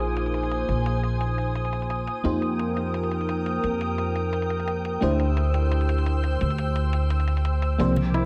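Liquid drum and bass at 173 BPM with a lush, warm mood, this short cut from a longer piece sets a growly, woody upright bass up front beneath a round FM electric piano carrying a filter sweep, chorus, phaser and 12-bit sampler grit, a glassy, ethereal FM pad holding sustained suspended chords, and filtered electronic hi-hats re-recorded in a small room in the background, with a felt-muted upright piano slipping in soft arpeggios through dub echo at 7.8 seconds and bright congas touching in at 8.0 seconds, the echo-heavy mix set in moderate echo-chamber reverb.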